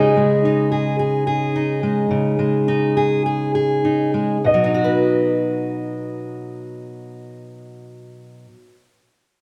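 Heartfelt and nostalgic, this short folk passage is cut from a longer piece and moves at an unhurried pace in four, easing to a slower pace over its first 4.4 seconds as a C#sus2 chord settles onto B. A fingerpicked steel-string acoustic guitar sits up front with fresh strings and audible finger squeak, carrying the accompaniment until 8.9 seconds, while a dark grand piano with a mellow, boxy tone and long sustain carries the melody in a narrow upper range until 8.4 seconds. A large, wet studio reverb surrounds the pair.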